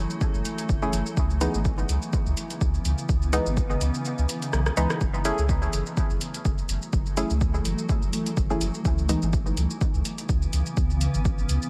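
Hazy, deep dub techno in a shuffled 4/4, cut from a longer piece, where a cloudy granular pad with 12-bit grit and a round, soft sub bass pump beneath a punchy overdriven kick and tape-warm hi-hat, rim click and shaker, while a muted sawtooth chord stab soaked in chorus, phaser and dub echo enters at 0.8 seconds and gets a filter sweep from 5.0 seconds, an eerie metallic drone hovers very quietly until 5.0 seconds, the kick drops out for a drum fill just before that point, and vinyl crackle sits in the background over chords moving between F#m7 and C#m7.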